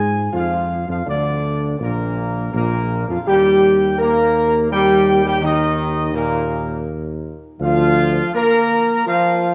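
Bathed in the wet reverb of a scoring stage, this triumphant yet solemn classical brass passage in three-time is cut from a longer piece. A dark trumpet section carries the melody with light vibrato over sustained chords from a distant, roomy French horn section and a tight, warm trombone section, moving from Fm through Bb to Eb and settling on Bb/D at 7.6 seconds. Underneath, a mellow, up-front solo tuba plays the bass line until 8.2 seconds.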